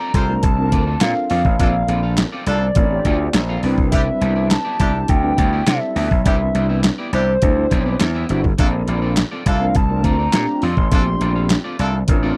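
Smooth and danceable, this early-eighties boogie funk cut rides an up-front, thumpy detuned 8-bit drum machine with handclaps and a gritty, overdriven slap bass that hits punchy and bright. A hollow, woody clarinet-like synth lead carries the melody with chorus and slapback echo until 11.5 seconds, over mellow sawtooth synth brass, a distant, roomy horn section playing a second line, and a twangy electric guitar riff at the edge of break-up, bathed in lush chorus. The sound is dry and close, like a 1970s studio recording, with the harmony moving between major-ninth chords.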